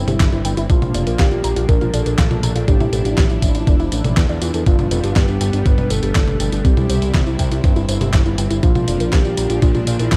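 A smooth, detuned analog pad with chorus, a warbling lo-fi pluck tucked in the background with chorus and digital delay, and a thick, nasal, saturated bass up front open this melodramatic, danceable italo disco excerpt, joined at once by a clean 12-bit drum machine with a fat snare, handclaps, hi-hat, tambourine and toms, plus a thumpy electronic kick, before a soft, round, octave-layered synth lead with vibrato, phaser, delay and cassette-tape color carries the melody from 0.7 seconds over a C, Bb, Dmadd9/A and G progression in a dark, warm production with light reverb.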